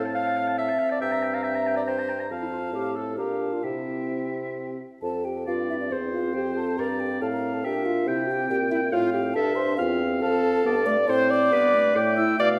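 This lively, graceful passage of a quick classical-period movement for wind quintet opens with all five players together at 138 BPM in 3/4, in F major, with a flexible, rubato feel. A pure, hollow-toned flute with vibrato carries the melody high above the group, close and clear though lighter in the balance than its partners. A warm oboe with light vibrato sings a second line from a more distant, roomy place, while a mellow clarinet and a smooth-topped French horn with light vibrato fill in the accompaniment, the horn sitting most prominently in the blend. Underneath, a dark bassoon with light vibrato supplies the bass from a similarly distant position. The music moves from its opening section into a contrasting one at 5.0 seconds, and the whole ensemble is bathed in the generous, wet reverb of a concert hall.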